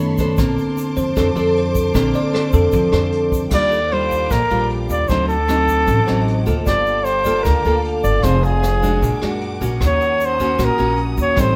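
A bell-like tine electric piano takes a solo over the first 3.5 seconds of this romantic, sophisticated bossa nova, alongside fingerpicked nylon-string guitar, woody pizzicato upright bass, lush bowed symphonic strings sitting low in the mix, brushed drums with dark cymbals and a punchy kick, and a grainy egg shaker in the background. At 3.5 seconds a clear flugelhorn with vibrato steps up front with the melody as the harmony moves through chords such as Ebmaj9, D7b9 and Gm9. The band plays together in one room with light reverb, in this excerpt cut from a longer piece.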